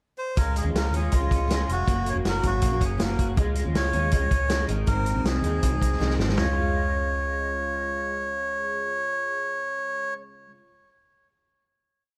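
A reedy, nasal melodica carries a motif-based melody up front with plate reverb, entering at 0.2 s in this bright, youthful jangly indie pop piece in Db major at 160 BPM. Beneath it, a full-bodied fingerpicked steel-string acoustic guitar sits in the background, a slightly broken-up, lo-fi electric guitar rolls out arpeggios through analog chorus, and a dark, foam-muted bass plays a round, melodic line. A vintage drum kit with a tight kick and a medium-tuned snare drives a brisk backbeat up to a fill at 6.0 s, then stops at 6.5 s as the rest of the band rings out a final Db chord.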